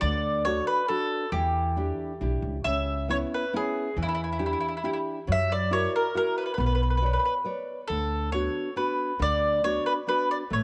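Passionate and wistful, this short cut from a longer Italian folk serenade moves in a steady, straight 3/4 at 137 BPM in B minor, tuned slightly high at A4 = 441 Hz. A picked mandolin carries the melody up front, its doubled strings giving a warm, woody voice that stays between E4 and E5. Beneath it, a fingerpicked nylon-string guitar supplies full-bodied, deep classical accompaniment across a broad range, while a pizzicato upright bass with steel strings sits close and woody in the low register. The harmony drifts from D through Em7, C#m7, Em7 again and F#7 to a Bmadd9, then turns toward a D6 as a new section begins at 7.9 seconds. All three instruments play throughout the 10.6 seconds, bathed in a moderate plate reverb that lingers with a long, glowing tail.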